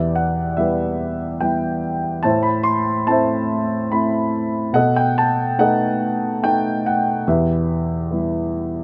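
Closely and intimately recorded with light reverb, this brief excerpt of lyrical classical solo piano in E minor has a worn, warm baby grand sitting up front with long sustain, moving wistfully and darkly through Em, Am, B7 and back to Em in an unhurried 3/4 at 72 BPM with rubato, ranging from E2 to C6 across its 8.8 seconds.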